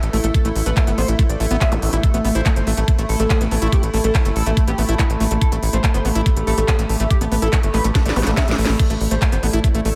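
Alien and intense, this psychedelic trance excerpt drives in straight 4/4 on a knocking, up-front electronic kick and a layered kit of cracking snare, crisp hats, handclaps and crash, with a drum fill from 8.0 to 8.8 seconds. A tight, punchy sequencer bass with tube saturation anchors the low end and a squelchy, resonant acid bass riff sits in the background above it, while a screaming, guitar-like overdriven lead carries the melody through distortion, phaser and delay. Behind them a morphing, detuned wavetable pad holds sustained chords and a lo-fi, nostalgic tape-like pad adds texture, both pumping under sidechain, with very quiet zaps and swells around 1.7 and 8.2 seconds.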